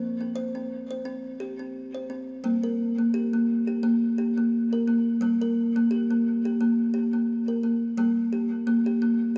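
A wet church reverb with a long 3.7-second tail surrounds this short fragment, and a faint mains hum sits low in the background. It is gentle, meditative world music built around a single solo kalimba, playing at 87 BPM in 4/4 with a light swing on the sixteenths. The kalimba sits up front with a woody, hollow-box tone and bright, short thumbnail plucks, spanning F3 to C5 in G minor pentatonic, tuned slightly low to A4 = 439 Hz. A diffuse ambient delay trails each note and blends into the reverberant space. The harmony begins on an open F5 before settling onto G minor at 2.4 seconds, and the phrase moves into a brief new section at 8.0 seconds before the fragment ends at 9.4 seconds.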